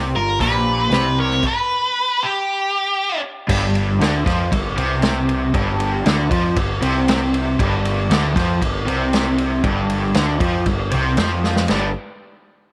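Heard in light reverb and small room ambience, this gritty, driving blues rock and southern rock fragment sets a dark, double-tracked overdriven guitar riff with harmonic tremolo over a growling, overdriven picked bass and a punchy vintage drum kit with a rolled-off top, while a fuzzy octave lead guitar with slapback echo cuts in from 0.2 to 3.2 seconds above a slightly broken-up second lead line tucked in the background, and a drum fill arrives at 11.4 seconds.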